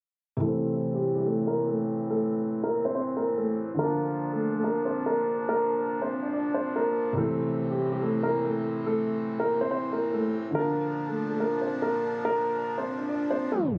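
From 0.4 seconds, a dark concert grand piano carries the melody in this menacing hip hop fragment, its boxy, up-front tone showing audible action noise and deep bass, softened by a low-pass filter and trailed by a digital delay. Beneath it, a felt-muted upright piano adds soft, thick-felt accompaniment, while an accordion holds reedy, mid-forward sustained chords with a slow beating in the reeds. The half-time feel moves slowly between Am and Bb, giving the passage a brooding, shadowy weight. A filter sweep runs through the whole section, and the sound has the intimate closeness of a phone recording made in a small room, with light reverb and club ambience around it. A tape stop at 13.5 seconds brings the parts to a halt just before they end at 13.8 seconds.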